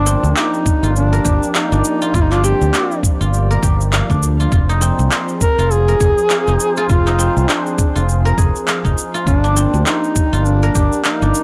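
A swung sixteenth-note groove in 4/4 drives this meditative organic downtempo excerpt. Electronic cabasa and handclaps enter at 0.1 seconds and a compressed, thumpy electronic kick joins at 0.7 seconds, under a round, up-front fretless electric bass with transformer saturation. Over a detuned sawtooth analog pad with chorus and sidechain pumping, a close-miked duduk carries a folk-style melody with vibrato through tape echo, while a silvery guzheng played with fingerpicks plays arpeggios roughened by 12-bit sampler grit and analog delay. A metallic bronze singing bowl sits barely audible beneath it all, in a dry hardware recording with light small-room reverb as the harmony moves from Gm7 to Fm and back.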